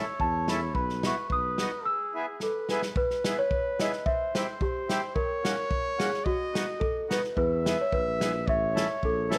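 Alpine folk in a bouncy, jolly dance-band style, this excerpt moves at 109 BPM in a straight 2/4 in E major, with a worn, bell-like celesta carrying the melody in a delicate, slightly out-of-tune voice beside a mellow trumpet second line and a reedy, airy accordion accompaniment. A natural acoustic drum kit sits up front with a punchy kick and a medium-tuned snare, playing a fill from 2.4 to 3.0 seconds, while a dark, close-miked tuba supplies the bass briefly at the start and returns at 7.4 seconds. Light studio reverb frames the band as the harmony moves through chords such as C, F#/A# and B before settling on E and A.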